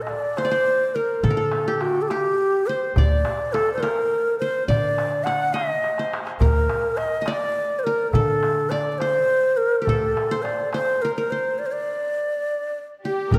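A breathy, reedy ney carries the melody up front and close, its vibrato adding a longing, hypnotic character to this Arabic maqam ensemble excerpt in a straight 6/8. Beneath it, a bright-edged qanun plucked with fingerpicks plays a second line. A crisp, metal-shelled darbuka played with soft hands sits further back and adds a fill at 5.8 s, while a woody, growly pizzicato upright bass drops out at 10.1 s. The ensemble halts in a stop near the end, and a distant, focused bowed violin section slips in at 13.0 s, the whole group sitting in a moderate scoring-stage reverb.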